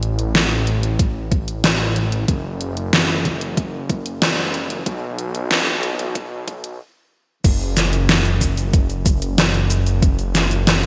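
A dark, detuned saw bass rumbles and beats up front through this nocturnal, nostalgic synthwave excerpt in F# minor at 93 BPM, its sustained low notes colored by tube saturation and sidechain pumping. A pop drum kit with a deep, overdriven snare, crash, hi-hat and shaker sits in gated reverb, joined at 1.0 s by a knocking electronic kick. A filter sweep runs through the opening until 7.4 s, when a new section begins, all set in a lush hall and a bright 1980s-style digital sheen.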